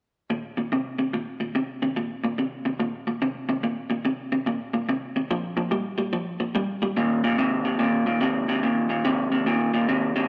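A lone electric guitar through a small old amp opens this rollicking, swaggering swung blues fragment, its picked, slightly broken-up, lo-fi tone sitting up front in spring reverb and a moderate echo-chamber ambience as the harmony shifts from Eb5 to Bb5 at 5.3 seconds and back to Eb5 at 7.0 seconds.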